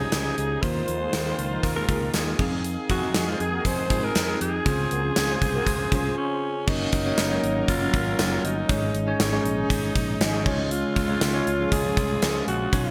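A bright 1980s-style digital production sits in a moderate, lush hall reverb, giving this uplifting, nostalgic pop excerpt a glossy sheen at 119 BPM in a straight 4/4. A raspy, gritty alto saxophone carries the solo melody with clear vibrato and a digital delay, while a bell-like tine electric piano heard through its built-in speakers supplies clean accompaniment bathed in lush chorus. A punchy gated drum kit sits up front with bright cymbals, a medium-tuned snare and an airy stone-room ambience, joined by a barely audible, jingly tambourine from 0.1 seconds. Beneath them, a growly, amped fretless electric bass anchors the low end, and a classical-style brass ensemble holds sustained chords in the background, with a very quiet, dark synth brass adding detuned sawtooth stabs with ring modulation and a filter sweep from 0.9 seconds. The harmony moves from Dbadd9 through Fm7 and Dbmaj7 before a second section at 6.7 seconds opens on Gb and resolves through Absus4 to Db.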